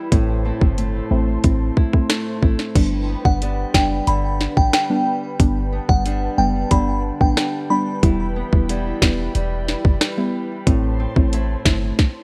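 Sunny and bouncy, this dancehall excerpt moves at 91 BPM in G major. An up-front electronic drum kit with a tight kick, sharp snare and metallic hats sits over a deep, boomy 808-style bass, while a fingerpicked nylon-string guitar plays arpeggios through digital delay. A soft, round pluck and an airy, breathy pad carry the chords with chorus and sidechain pumping, a glassy synth bell melody appears from 3.3 to 7.8 seconds, and the whole mix is dry and worn, with the warbling pitch drift of old cassette tape.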